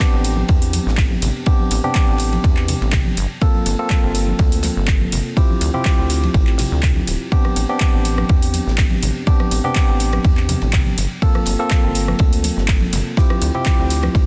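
Deep house with a smooth, warm mood and a light swing, this is cut from a longer piece. An overdriven electronic kick sits up front, deep and layered, while a punchy analog drum machine adds gritty handclaps, hi-hat and rim click, and congas sound distant, as if from a large room in the background. A damped 70s acoustic kit adds a dry ride cymbal and a medium-tuned snare with a rolled-off top, also in the background, with its cymbals pumping to the sidechain. A rubbery, hollow square bass with a resonant filter pluck and tube saturation bounces underneath from 0.1 seconds on. A bright, clean tine electric piano plays pumping stabs through Am11, Gm11 and Dm11 chords, shaped by delay and a low-pass filter sweep that runs through the whole passage. The mix has light small-room ambience and a dense, heavily limited modern master.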